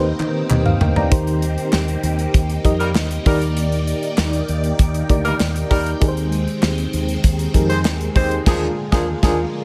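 A drum fill opens this brief, nostalgic slice of 1980s-style pop, with an FM electric piano pulsing through its tremolo alongside a lush string machine treated with phaser and ensemble chorus. The fingered electric bass sits punchy and direct beneath, while the polished drum kit, up front with bright cymbals and a punchy kick, drives a straight, uplifting groove as a hollow group handclap sits in the background. At 2.8 seconds a mellow horn section arrives with tight, octave-doubled stabs and a smooth top, while the electric piano's chords stay dark and decaying. The harmony moves from Cm7/Eb through Ebmaj7 and Abmaj7/Eb, landing on Bb7 for a band accent that closes the passage at 9.6 seconds. Light reverb and small-room ambience give the mix an airy, intimate polish.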